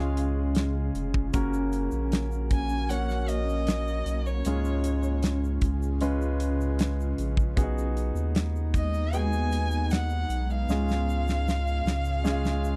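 A dry, close recording in a 1970s studio style, lightly touched by reverb, frames this emotional, heartfelt pop ballad at 77 BPM in a straight 4/4, cut from a longer piece. A warm violin carries the melody from a distance, one bowed player with a smooth, even tone, vibrato and a slapback echo, while a clear concert grand piano gives intimate, present accompaniment with long sustain, deep low notes and audible action noise. Behind them an ethereal, mellow pad holds sustained chords in the background, its detuned sawtooth tone given body by ensemble chorus and built-in reverb. Up front, a thick, saturated sub bass anchors the harmony, and a polished acoustic drum kit with a tight kick and medium-tuned snare enters at 0.2 seconds. A grainy, bright egg shaker joins softly at 1.3 seconds, and the chords move from C# through F# and B6 before a drum fill closes the passage from 10.7 seconds.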